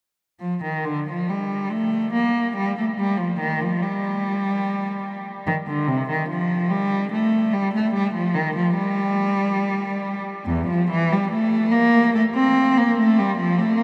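In an unhurried 3/4 at 72 BPM, the rhythm breathes with a free, rubato feel, giving this baroque-style suite movement a serene, flowing character. A single bowed cello plays alone from 0.4 to 13.8 seconds, ranging from E2 up to C4, with the instrument tuned to A4 = 444 Hz. Its tone is rich and focused, coloured by vibrato, and it sits up front in the mix. Around it, a huge, wet reverb with a 7.7-second decay places the lone player in a vast, echoing space. This brief passage is a fragment lifted from a longer classical piece.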